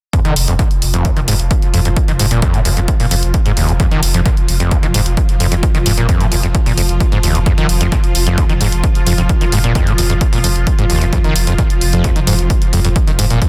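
A punchy analog kick, an electronic hi-hat and a screaming, distorted acid riff arrive together at 0.1 seconds, setting up driving peak-time techno at 131 BPM in a straight 4/4 with a hypnotic, industrial mood. The acid line sits up front, a squelchy, aggressive sawtooth voice with a resonant filter sweep, bright bite and decaying notes, thickened by subtle chorus and delay and shaped by sidechain pumping. A deep, thick sub bass holds F1 from 0.2 seconds, its saturated triangle tone overdriven, low-pass filtered and pumping with sidechain compression. At 0.8 seconds a swarming drone fades in underneath, a tense, evolving layer of detuned unison sine and triangle waves, wave-folded and granular, with a slow attack, long release, its own reverb and the same sidechain pumping. The hi-hats pump too, while the dense, heavily limited modern master keeps this short cut from a longer piece loud and relentless in a digital ambience.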